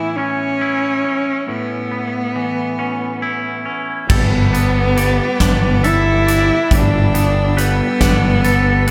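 In a slow, straight 6/8 at 46 BPM counted in dotted quarters, this cinematic, euphoric post-rock passage in G lydian is cut from a longer piece. It opens on an Aadd9 chord, with a warm, bowed solo cello carrying the melody up front with vibrato and a smooth, focused top. A clean, picked, twangy electric guitar spins arpeggios beneath it, and both parts carry slapback and tape echo. At 4.1 seconds the harmony moves to Gadd9 and the arrangement opens up. A second twangy guitar adds higher arpeggios in the background, bathed in spring reverb as well as echo, while a dark, nasal chamber string section holds soft-attacked sul tasto chords behind it. A punchy, fuzz-overdriven fingered bass sits up front on a low G, and a huge arena drum kit arrives with punchy kick, medium-tuned snare, hi-hat and crash, all set in a concert-hall reverb for a big arena sound.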